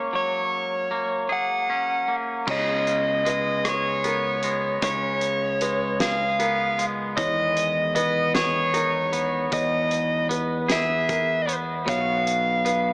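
This cinematic, euphoric post-rock passage in 6/8 opens with a biting, overdriven lead guitar carrying the melody up front. Beneath it, a clean, twangy electric guitar picks bright arpeggios, both guitars trailed by analog delay, while a very quiet pedal steel holds sustained chords with fingerpicked slide and volume swells. At 2.5 seconds a growling, overdriven fingered bass and a loose indie drum kit with a fat snare, tight kick and dark cymbals arrive, joined by a soft felt-muted upright piano tucked in the background with delayed arpeggios; the music sits in a moderate concert hall reverb with a small-speaker character and a faint mains hum as the chords move from F#add9 through C#7 and Emaj7 to B.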